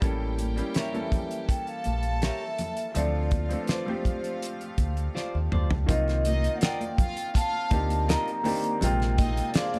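The drums and fingered bass set a straight groove in 4/4, with the damped 1970s kit sounding dry and fat at the snare and the dub bass dark, round and up front. This lush, 1970s-style soul excerpt has a smooth, cinematic mood, moving through chords such as A7b9, Dm7, Cm11 and Bb9. The intimate baby grand piano supplies accompaniment, its action noise audible, while bright, high-tuned congas sit in the background and a bowed violin section floats above with a pure, soft-attacked second line. At 0.8 seconds a close-miked vibraphone with soft mallets enters to carry the melody, ringing and mellow with a medium motor vibrato, as a clean, picked electric guitar plays a riff alongside it. A drum fill at 5.2 seconds leads into a new section at 5.9 seconds, and the bass drops out at 9.4 seconds.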